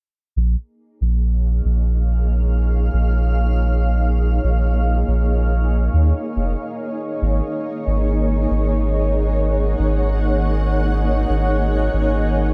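This excerpt of hazy, meditative ambient dub opens with a soft dub sub bass at 0.4 seconds, its deep, round tone set up front at 70 BPM in a straight 4/4. At 1.1 seconds a granular cloud pad fades in with a slow attack, holding sustained chords that feel blurred and evolving, its detuned unison voices bright yet cloudy and bathed in their own built-in reverb. The bass sits a little louder than the pad, giving the low end a soft, sustained presence beneath the drifting haze. The harmony rests on A#m7 before shifting to G#sus2 at 7.2 seconds, which leaves the mood open and unresolved. A light reverb surrounds the recording, and the tuning sits slightly below standard pitch at A4 = 438 Hz.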